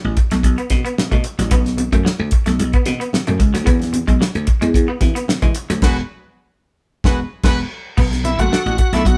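A lightly reverberant live-room sound carries this short, sly and hypnotic funk excerpt in B dorian at 111 BPM, where a growly, foam-muted thumbed slap bass and a damped 70s drum kit with a tight kick sit up front over very quiet, thin-skinned congas and a clean, hollow-bodied semi-hollow guitar riff, a smooth-topped horn section with light vibrato joins for a band accent at 5.8 seconds, and a shouting, lightly overdriven tonewheel organ with chorus vibrato takes a brief solo from 8.0 seconds.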